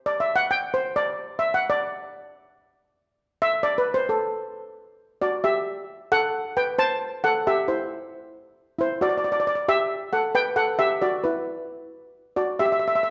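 A dark production places a lone steel pan up front in a recital hall, its reverb lingering for about 1.5 seconds. This is calypso at 134 BPM in a straight 4/4, yet the mood runs dramatic and tense, and the clip is cut from a longer piece. The instrument is a double seconds pan struck with medium rubber sticks, giving a metallic, shimmering tone across a range from E4 to A5. It opens entirely alone with the harmony unstated, then at 4.5 seconds the music moves into a new section. That section is built on F#7 chords framing Am, Em7 and Em, which keeps the tension high until the end at 13.1 seconds.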